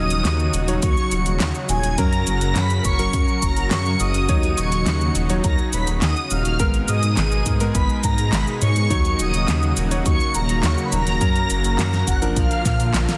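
Synthwave in Eb minor at 104 BPM, this cinematic, driving clip from a longer piece sets a mellow, brassy synth lead with chorus and tape echo over a shimmering string-machine violin line, a lush, warbling unison pad and a dark, rumbling detuned saw bass, the pad and bass both pumping with sidechain. A warm electric grand piano adds clangy, gritty stabs with delay in the background, while a pop kit of fat snare, metallic hats, handclaps and shaker is joined by a punchy electronic kick at 0.8 seconds, ending on a drum fill at 12.7 seconds. The chords cycle through Ebm7, Gb and Abmadd9 before closing on Bb, all under light reverb and a dense, heavily limited modern master.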